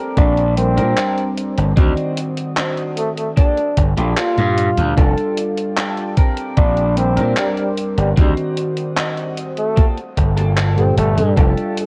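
A straight 4/4 groove at 75 BPM, anchored by a thumpy, up-front electronic kick and a gated 80s digital drum machine whose handclaps and hi-hat carry gated reverb, arrives at 0.2 seconds in this nostalgic, faded vaporwave excerpt cut from a longer piece, just after the pad and guitar begin. A gritty slap bass, punchy and overdriven, sits prominently in the low register, while a clean, twangy electric guitar plays a riff bathed in lush chorus and tape echo. A mellow tine electric piano enters at 0.6 seconds with chorused, echoing accompaniment, and a very quiet, dark pad with a slow attack holds sustained chords underneath. Over this, a breathy flugelhorn carries a jazz-style melody with light vibrato and scooped notes, sounding distant and whispered through its own tape echo. The harmony cycles through lush extended chords, Bb69, D7b9, Gm9 and F69, and the whole mix sounds dry yet worn, like warbling old cassette tape with a drifting pitch.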